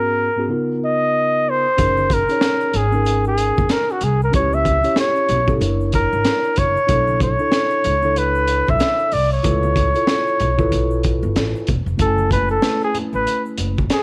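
Nocturnal and mellow, this jazz-hop excerpt moves at an easy 94 BPM in F# minor, with a swung sixteenth-note feel. A mellow flugelhorn carries the melody up front from the start, over a clean, direct tine electric piano that lays out lush extended chords such as G#m11, F#69 and C#7alt. At 1.8 seconds the groove arrives: a crunchy breakbeat kit, dark and saturated with a punchy kick, a high-tuned snare and a rolled-off top, alongside a woody pizzicato upright bass on steel strings. Egg shaker and congas played with hard hands ring very quietly beneath, adding a faint small-room ring. At 12.0 seconds the harmony settles on F#m9 and the flugelhorn steps into a short solo, all set in an intimate small-room ambience.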